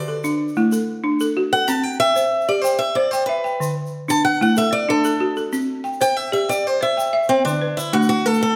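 A rolling 12/8 lilt with a straight feel carries this hypnotic, joyful stretch of West African string and xylophone music, cut from a longer piece. Up front, a picked, swing-style acoustic guitar takes a bright, boxy solo melody from the start until 7.5 seconds. Beside it, a woody, buzzing balafon struck with hard rubber mallets plays arpeggios with a dry, close character. Far behind them, a grainy egg shaker ticks along in the background and drops out at 8.4 seconds. The harmony sways back and forth between D and C, settling on D as a short closing section begins at 7.5 seconds. A moderate recital-hall reverb lends the ensemble a gentle sense of space.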